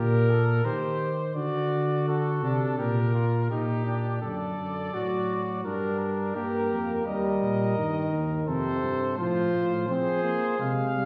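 Joyful and elegant, this classical canzona for brass ensemble opens with a mellow cornet carrying the melody, touched with light vibrato, over a dark, punchy trumpet on the second line and a soft-attacked tuba in the bass. At 4.2 seconds a trombone with gentle vibrato and a smooth top joins as accompaniment, while the harmony moves from G minor through E-flat and F to a closing F minor. The cornet, trombone and tuba sit up front, heard from further back in a reverberant recital hall, and the passage is cut from a longer piece.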